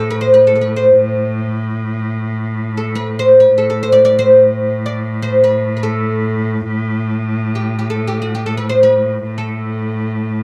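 A bright, woody fretless oud carries the melody up front, its plectrum-plucked double strings ranging from a slightly flattened F#4 up to D5 before falling silent at 10.1 seconds. Beneath it, a single bowed cello holds a rich, smooth A2 drone with vibrato until 10.4 seconds. This melancholic, hypnotic passage of Turkish makam ensemble music unfolds in free time in makam huseyni on A, with light reverb, and is cut from a longer piece.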